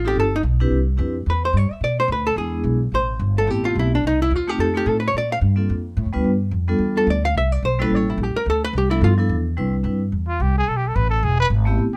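Swinging eighths at 217 BPM in 4/4 drive this playful small-group swing and bop passage in C major, where a dark, clean hollow-body archtop guitar solos up front over woody, growly pizzicato upright bass and bright, ringing vibraphone comping with slow motor vibrato, until a breathy trumpet with light vibrato takes over the solo at 10.3 seconds, all heard through close, detailed microphones with little reverb.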